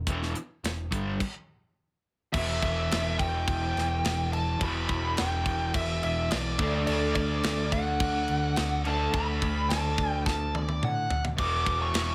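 Hard rock in E minor at 106 BPM, this driving, menacing excerpt opens with a picked electric bass, a tight metal drum kit and an overdriven semi-hollow guitar playing the riff, the guitar double-tracked and up front with a harmonic tremolo shimmer on its hollow-body tone. After a brief stop from 1.2 to 2.3 seconds, a bluesy lead guitar enters with a dark, distorted melody high in its register, trailed by digital delay. The bass sits round and punchy underneath, while the drums are up front with a tight kick, a medium-tuned snare and a rolled-off top, adding crash, hi-hat and toms. The harmony moves from E minor to D before a drum fill near 10.3 seconds leads to a closing E5 chord. A moderate studio ambience gives the whole mix a compact room around it.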